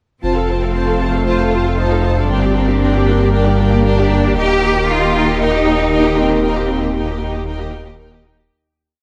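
In a straight 4/4 at 116 BPM, this vast, futuristic hybrid orchestral and electronic film cue moves through F, Gm and Eb as the cello section carries the focused melody over sustained double basses and a deep, saturated sub bass, while violins and violas rock a lush two-note figure in the background, French horns add very quiet slow swelling chords, and a shimmering chorused pulse-width pad sustains chords within a moderate scoring stage reverb, until a fade-out from 6.4 to 8.5 seconds closes the whole piece.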